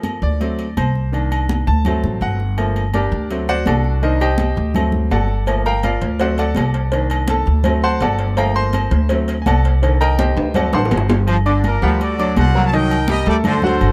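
A close, detailed recording with a light reverb frames this driving, passionate salsa excerpt at 166 BPM in a straight 4/4. A bright grand piano sits up front and carries a solo from the start to 11.3 seconds, its polished, short-sustain tone ranging across the chords while a pizzicato upright bass, woody and thumpy on gut strings, anchors the low end just as prominently. Congas with a high-tuned, thin-skinned snap hover in the background beside ringing agogo bells and metal-shell timbales, and a tight, vintage-sounding cowbell and bongos pair joins from 5.5 to 11.3 seconds. The harmony cycles through D7, Cm7 and Gm7, and a drum fill leads into a new section where a brilliant, close-miked trombone section enters at 11.3 seconds with a second line. A punchy trumpet section follows moments later with the melody, pushing the piece onward as the passage cuts off.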